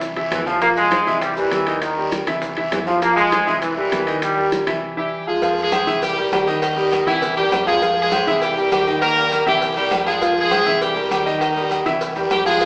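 A brilliant, tight trombone section with vibrato sings the opening melody up front until 4.5 seconds, and during a short break a present horn section with light vibrato takes over at 5.0 seconds in this passionate, driving salsa. A clear grand piano with audible action noise carries the accompaniment over a dark, punchy hollow-body electric bass. Ringing timbales and agogo bells, a raspy guiro and grainy maracas sit in the background alongside very quiet round, low-tuned bongos and cowbell and soft-handed congas, all bathed in a large studio reverb with the lo-fi character of AM radio, like a band playing live in one room.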